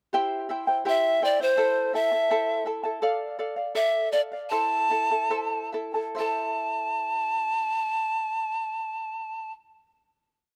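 Dry and close, as if played outdoors in open air, this short, wistful Andean folk piece in A minor moves in 2/4 at 67-83 BPM and eases into a slowdown from 3.0 seconds. A fingerpicked charango with shimmering double strings and open chord shapes strums the C, Am, Dm and Am changes with a slapback echo. From 0.9 seconds, a breathy bamboo pan flute sits up front with a reedy, tongued chiff and vibrato, tracing a motif-based melody in balanced phrases before both settle onto a final chord at 6.2 seconds.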